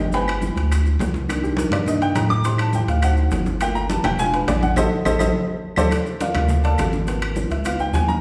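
A sultry, sophisticated slice of up-tempo Afro-Cuban jazz, cut from a longer piece, where a warm, natural-toned baby grand piano sits up front and takes a solo throughout, its chords and lines moving over a rubbery, hollow square-wave bass with a dark, bouncy pluck. Beneath them, bright, thin-skinned congas lead the percussion alongside close, dry timbales with a ringing metal shell, while round low-tuned bongos, woody claves and grainy maracas sit further back. Around 4.8 seconds the band hits an accent and a drum fill follows at 5.2 seconds before the passage repeats, all bathed in the reverb of a recital hall.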